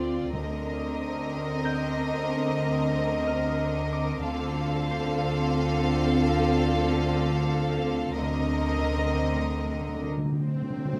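In a steady 3/4 at 92 BPM with a straight feel, this excerpt of cinematic suspense scoring moves through an uneasy, mysterious stretch built on Cm7/D, Dm7 and back to Cm7/D. A clear, floating violin section carries the melody high between D5 and F5, while a second violin section with a soft attack and smooth top plays a gentle line beneath it, both bowed sul tasto. A dark, woody viola section with vibrato holds a lush accompaniment in the background, and a mellow, punchy French horn section sustains tight chords with light vibrato. Below, a warm cello section and a close, dark double bass section anchor the bass with pure, soft-attack bowing, and a ringing concert harp adds fingerpicked texture in the background up to G6. Timpani struck with hard mallets sound close and dry at 0.3 seconds and return with a fill from 8.2 seconds, and an electronic swell enters at 10.4 seconds, all set in a moderate scoring-stage reverb.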